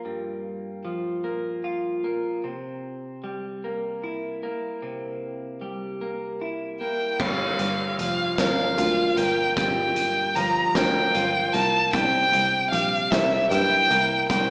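A moderate hall reverb and a small-speaker sound frame this cinematic, cathartic post-rock excerpt in G dorian, moving at a slow 50 BPM in 6/8 over Gm7 and C7. A bright, twangy twelve-string electric guitar with spring reverb plays clean, compressed arpeggios from the start, and a single clear, focused violin enters at 6.8 seconds with an up-front bowed melody full of vibrato. At 7.2 seconds a round, foam-muted picked bass and an oversized, low-tuned acoustic drum kit join, the kit dark and gritty with a fat snare, punchy kick and dark cymbals.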